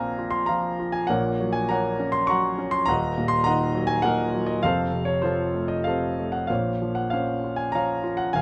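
Classical solo piano in Bb minor, moody and cool, moves in a rubato 3/4 at around 92-105 BPM as a concert grand with deep bass and an up-front presence spans Eb1 to Db6 across this lyrical 8.4-second fragment, passing from Bbsus2 through Gb/Bb, Ebm and F to settle on Bbmadd9 in light reverb.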